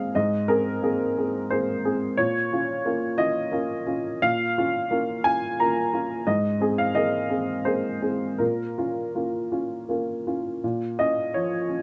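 A worn, woody, slightly detuned upright piano plays alone and up front in this brief, intimate and reflective fragment of neoclassical minimalist music, moving in a rubato three-four as it alternates between Abadd9 and B-flat minor chords across a range from Ab2 to Bb5, set in a moderate studio ambience, with a new section arriving at 10.6 seconds.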